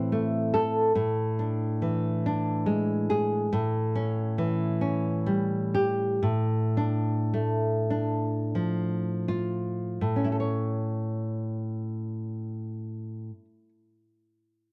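A dry, close 1970s-style studio sound puts a dark, fingerpicked nylon-string guitar up front in this intimate, melancholic romantic fragment for solo classical guitar in a rubato 6/8, which slows from 2.2 to 10.0 seconds as the harmony moves from Am through E7/A, A7 and Dm/A before arriving on A major at 10.0 seconds, the guitar sounding until 13.7 seconds.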